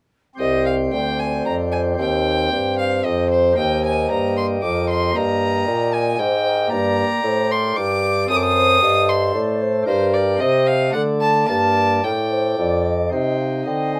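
In a steady, straight triple metre, this solemn, flowing excerpt from a baroque-style classical sonata movement sets a rich, reedy, gut-string violin up front on the second line above a hollow, distant wooden flute melody, a light, bright pipe organ with sparkling flute stops as continuo accompaniment, and a mellow, roomy bassoon bass. The organ sounds first, with the other parts joining a moment later, all within moderate studio reverb.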